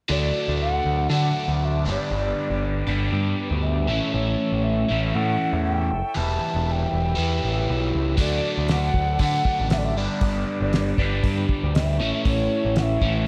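Trippy and mysterious, this psychedelic rock passage in straight 4/4 is cut from a longer piece and sits in a small room with light reverb. A mellow alto ocarina carries the melody, its airy clay tone coloured by vibrato, tongued phrasing and tape echo. Beneath it, an overdriven electric guitar plays a double-tracked, compressed riff through a phaser, while a growling picked bass, also overdriven, sits up front. A tonewheel organ holds smooth, clean sustained chords in the background, treated with chorus vibrato and lush chorus, as the harmony moves through D, G, A and E minor. At 8.2 seconds a cloth-damped drum kit joins with hi-hat, a tight kick and a fat, thuddy snare, dry and dark with a rolled-off top.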